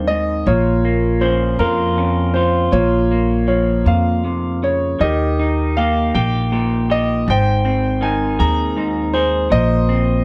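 An intimate, reflective acoustic folk-pop ballad in a straight 6/8, cut from a longer piece, where a clear, long-sustaining baby grand piano carries the melody over a slightly broken-up, twangy electric guitar through a small old amp and a woody, thumpy pizzicato upright bass on gut strings, all three up front in a dark production with light reverb.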